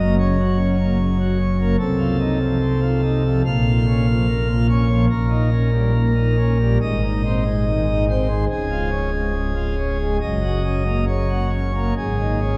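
A full, up-front principal chorus on solo pipe organ, romantically voiced and reaching from a deep Db1 up to F5, carries this reverent, serene classical chorale at around 71 BPM in 4/4 with unhurried rubato. The chords move from Gb through Bbm, Ab and Db before arriving on an Absus4, all bathed in a wet cathedral reverb with a five-second tail and a dark, warm production, in a fragment cut from a longer piece.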